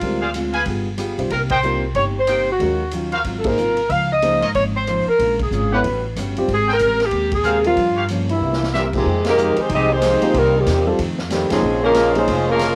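A home cassette recording with light reverb captures an energetic, joyful stretch of big band swing cut from a longer piece. An up-front, mellow saxophone section carries the melody over picked steel-string acoustic guitar, an intimate grand piano with audible action noise, a woody pizzicato upright bass and a swinging drum kit with a punchy kick, while a clear trumpet section adds soft-attack stabs through most of the opening section. Band accents punctuate the groove, a tight trombone section takes a second line in the background from 8.3 s, a short drum fill lands at 8.4 s, and a new section begins at 9.1 s.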